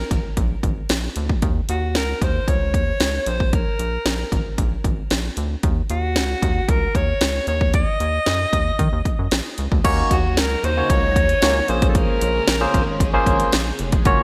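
A straight 4/4 groove at 114 BPM drives this late-night, danceable slice of early-eighties boogie funk in Eb dorian, built on an electronic drum kit with a heavy kick and cracking snare and a rubbery, bouncy square-wave bass. Up front, a breathy, close-miked alto saxophone plays a jazz-style solo melody with vibrato and scooped notes until 13.0 s. A barky tine electric piano through a combo amp enters at 9.8 s, followed closely by a swirling, phased string machine in the background, as the harmony moves to Ebm7 and Bbm9, all within bright digital production with light reverb in this section cut from a longer piece.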